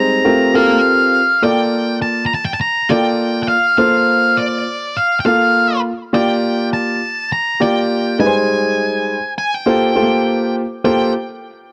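Late-night and slick, this short funk excerpt at 102 BPM rides a light 16th-note swing as a dark, picked octave-fuzz lead guitar carries the melody up front over a clear, natural grand piano accompaniment, moving through Gm11, Bbmaj7, Gm7 and Abmaj7 chords in a dry, close 1970s-style studio sound with small room ambience.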